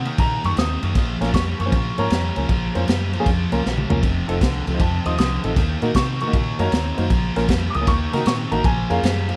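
Set in light reverb, this soulful, brooding electric blues shuffle, cut from a longer piece, features a clear, woody upright piano soloing through analog delay over an overdriven guitar riff, a round, foam-muted fingered bass, and a gritty, saturated breakbeat kit with dark cymbals and a punchy kick that plays a fill at 3.6 seconds, while a worn baby grand piano with long sustain joins in accompaniment at 1.2 seconds.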